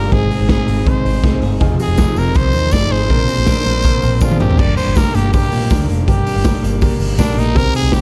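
The recording is dry and dark, a short cut from a longer piece of jangly indie pop with a restless, bittersweet mood and a straight 4/4 feel. A raspy, growling trumpet carries the melody with light vibrato, present and brilliant, while a compressed clean electric guitar plays picked arpeggios in the background beside a woody, mellow upright piano. A foam-muted electric bass sits round and amped underneath, and a gritty, saturated garage drum kit, up front with a punchy kick and a rolled-off top, plays nearly throughout. A twangy, slightly broken-up guitar through a small old amp adds faint picked accompaniment until 4.6 seconds, just after a drum fill, where the chords move from Ab, Fm7 and Bbadd9 to Gm. A jingly tambourine enters quietly in the background at 1.8 seconds.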